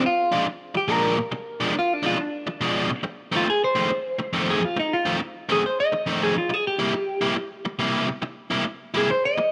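Swung eighth notes in 4/4 give this short blues fragment, cut from a longer piece, a swaggering, soulful strut. A biting overdriven guitar holds down a picked riff in its lower register, sitting up front through the whole passage. Over it, a clean electric guitar takes the solo from the start, its picked melody colored by a phaser and a slapback echo and sitting just as close to the ear. The harmony moves from Bb7 through Bdim7 to F7 and then C7 at 6.5 seconds, and both guitars carry on until the fragment ends at about 9.5 seconds. A moderate plate reverb lends the sound a lingering tail, and the whole performance is tuned slightly below standard pitch, to A4 = 439 Hz.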